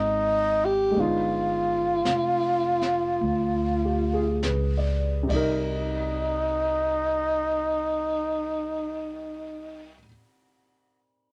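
This intimate, wistful jazz ballad excerpt opens with breathy tenor saxophone, warm baby grand piano and upright bass together, the music in C minor and swung at a slow 44-58 BPM that slows down over its first 5.7 seconds. The saxophone carries the melody up front in a dark, whispered subtone, with soft attacks, scooped notes and vibrato, close-miked so its breath is part of the sound. The piano accompanies with a natural, short-sustained tone, its action noise audible, while the pizzicato bass sits up front with a woody, steel-string voice. A brushed drum kit joins at 1.0 seconds and plays until 5.5 seconds, its dark cymbals, high-tuned snare and boomy kick kept low in the mix. The harmony moves from Fm9 to G7b9b13 and settles on Cm9 at 5.1 seconds, and after the saxophone and bass stop at 10.0 seconds the piano rings on alone in a small, moderately reverberant room until 11.3 seconds.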